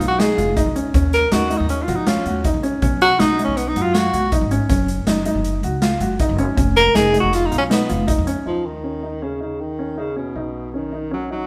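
A breathy tenor saxophone leads this tense, intricate progressive piece in 5/4, soloing up front with vibrato, subtone and a smooth top over a present baby grand piano playing arpeggios and a woody, thumpy pizzicato upright bass. A polished, airy swinging big-band drum kit with a boomy kick and medium-tuned snare drives the band until 8.4 s, after which the solo ends at 8.5 s and saxophone, piano and bass carry a new section to the close. The group plays live together in a large studio with moderate reverb, in a passage cut from a longer work.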